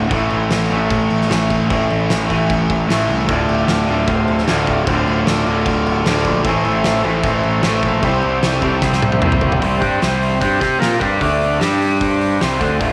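A straight 4/4 at 152 BPM in D minor carries this raw, swaggering garage rock excerpt, where an up-front, double-tracked overdriven guitar riff and a growling, overdriven picked bass open together over an oversized low-tuned drum kit with a punchy kick, fat snare, dark cymbals and a gritty, pumping stone-room sound, a buzzy vintage combo organ slips into the background with sustained chords at 3.3 seconds, and a drum fill at 8.8 seconds leads into a power-chord passage from 9.6 seconds, all in a light studio reverb.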